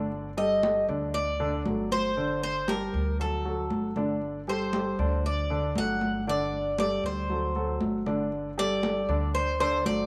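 A wet spring reverb bathes this short, sultry and danceable Cuban son and guajira passage, cut from a longer piece, where an intimate, up-front baby grand piano plays arpeggios with audible action noise and a slapback echo. A woody, thumpy upright bass on gut strings and ringing, high-tuned, band-limited congas sit underneath as the chords sway between G and D shapes. The picked, metallic Cuban tres enters at 0.4 s to carry the melody up front, its double strings partly doubled in octaves.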